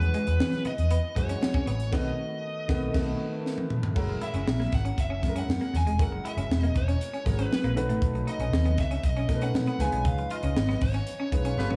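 A straight 4/4 groove from a crisp fusion drum kit, with a high-tuned snare and tight kick, drives this glossy, urban slice of polished 1980s jazz-funk pop, cut from a longer piece; a round, foam-muted fingered bass sits up front, while very quiet, hard-handed congas add color. Over mellow concert grand piano chords treated with analog chorus and slapback echo, a dark, overdriven lead guitar carries the melody, and a slightly broken-up picked electric guitar plays a chorused riff; the band hits accents from 1.9 to 4.0 seconds and again near the close, with drum fills. A distant, roomy horn section with light vibrato appears only briefly at 11.6 seconds, and the mix sits in light studio reverb with a faint mains hum.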